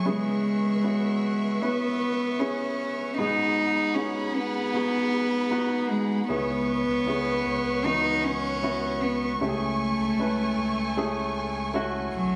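Captured on a phone in the room, this compressed clip carries a club-style reverb and a light studio ambience around a melancholic, longing pop ballad in C# minor at 77 BPM, cut from a longer piece. A close, up-front solo cello with an airy bow and soft attack sings the floating, pure melody through a digital delay, over a polished, present baby grand piano and a smooth-topped studio string section holding focused, vibrato-laden chords. At 6.3 seconds a deep, round sine sub bass enters beneath the return to C#m7 and the move to Amaj7/C#, adding a warm low floor.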